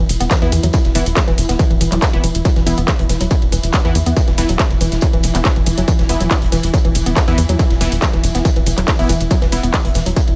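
A woody, wave-folded pluck riff and a tight, punchy sequencer bass open this excerpt of driving, peak-time techno, both pumping against the kick, with the pluck carrying chorus and delay. A techno kit of handclaps, metallic hi-hats, ride cymbal and shaker enters at 0.1 seconds, its hats, cymbals and percussion pulsing with sidechain pumping, and a distorted electronic kick follows up front at 0.3 seconds. Beneath them sits a very quiet, gritty breakbeat kit of hi-hat, medium-tuned snare and tambourine with a saturated, rolled-off top. A swarming, nasal drone sits in the background, evolving with granular texture and its own reverb. A mellow supersaw stab, detuned and sustained with a moving notch, adds dub echo until 9.6 seconds, while a studio reverb wraps the mix and keeps the mood relentless and dark.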